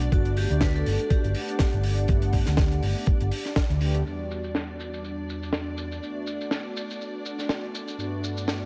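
Feel-good and sunny, this short nu-disco cut swings lightly over a gritty, thumpy electronic kick, a tight funk kit with a high-tuned snare, hats and shaker, and a round, amped hollow-body bass, both kick and bass dropping out around 4 seconds. Mellow synth brass with chorus, tape colour and delay pumps alongside a dark, woody string section holding sustained chords, moving from Gmaj7 through Em9 and Bm7. A bright, ringing vibraphone melody with slow motor vibrato floats through the opening seconds, while a filter sweep on the polysynth gives way to one on the drums in the second half, all in a small, lightly reverberant room.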